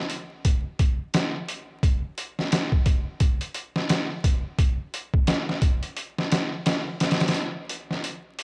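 A swung, 87 BPM trip hop groove in 4/4 comes from a lone sampler-style drum kit of kick, snare and hi-hat, gritty and pitched down with a thumpy kick and medium-tuned snare, overdriven and up front in a small room under vinyl crackle, setting a smoky, dark mood from 0.1 to 8.4 seconds, with a shift into a new section at 7.3 seconds before this short cut ends.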